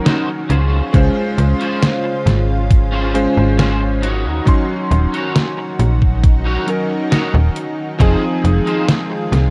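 A straight 4/4 pulse from a thumpy, tape-warm electronic kick and a detuned 8-bit drum machine's hi-hat and snare anchors this nostalgic, woozy vaporwave excerpt, where a snappy, metallic slap-like FM bass sits up front beneath a clear, clangy electric grand piano with analog chorus and delay, a twangy electric guitar riff at the edge of break-up, and a lush, detuned unison pad holding sustained chords in the background over Ebm7, Dbmaj7 and Fm7, all in a dark, dry production with a cassette-tape feel.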